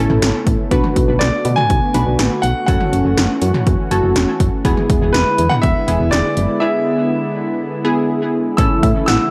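Punchy 80s electronic pad drums with a gated snare, gated reverb on the snare and toms, and metallic hats sit up front in this bright, upbeat synth-pop excerpt at 122 BPM, where a round FM bass anchors the low end, a clear baby grand piano carries the melody through dub echo, a funky sawtooth polysynth comp with chorus and dub echo fills the middle, a smooth detuned analog pad sustains chords with chorus, a break arrives at 6.6 seconds, and a soft triangle pluck slips in briefly at 8.8 seconds, all set in an echo-heavy mix with wet spring reverb.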